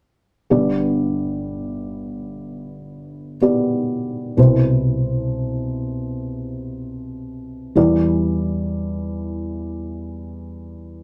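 A tender, hopeful pop fragment cut from a longer piece, built on a single felt-muted upright piano playing accompaniment from 0.5 to 11.0 seconds. The piano sits up front with a soft, dark, intimate tone, its thick felt giving the notes a hushed, rounded quality as it moves from G to Cmaj7 and then Em7. A moderate studio reverb lends the slow, straight pulse a natural sense of space.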